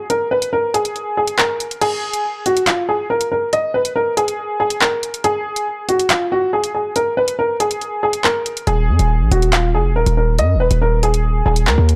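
A half-time drill groove at 140 BPM in 4/4 drives this menacing, ominous hip hop fragment in Eb minor, tuned slightly sharp to A4 = 441 Hz. An upright piano carries the melody from the first moment, sounding worn, woody and a touch detuned, with short, open notes held between F4 and Eb5 and softened by a low-pass filter. The electronic drill kit arrives at 0.1 seconds with crash cymbal, handclaps and tape-toned hi-hats, though its kick falls silent from 1.8 seconds until the distorted 808-style bass surges in at 8.7 seconds. That bass is the loudest and heaviest element, a saturated sine tone with a noise layer, fast attack and decaying notes ranging from Eb1 to Gb2. All three parts sit up front, set in a dark, warm production with light reverb, and the clip is cut from a longer piece.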